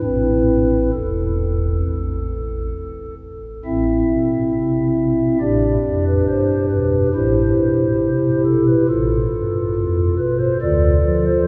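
Grave and solemn, this classical chorale-style fragment for solo pipe organ moves at 68 BPM in 4/4, with uneven, rubato beats that give it a freely breathing pulse. A single stopped-flute voice sits up front and spans E1 to E5, its soft, hollow flute stops shaded by a tremulant and a romantic voicing. The opening phrase is heard once, then returns at 3.6 s and carries through to the close at 11.5 s. The harmony stays in A minor, moving from Am through G/A, C/A and F/A before settling on Dm at 10.6 s. A wet cathedral reverb with a long decay surrounds the organ, and the church-like recording keeps the top end mellow, with the tuning set slightly above standard pitch at A4 = 441 Hz.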